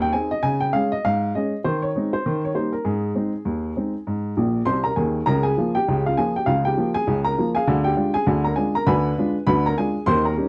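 Ragtime piano at 100 BPM in 2/4, cheerful and playful, with a swung sixteenth-note lilt and tuning a touch below standard pitch, cut from a longer piece. A lone upright piano, woody and boxy with short sustain, sits up front across a range from Bb1 to C6, moving through Ab and Eb harmonies before a fill at 4.4 seconds leads into a second section built on Bbm/Db and a Ddim7 chord at 7.7 seconds. The sound is dry and close in the manner of a 1970s studio, touched with light reverb.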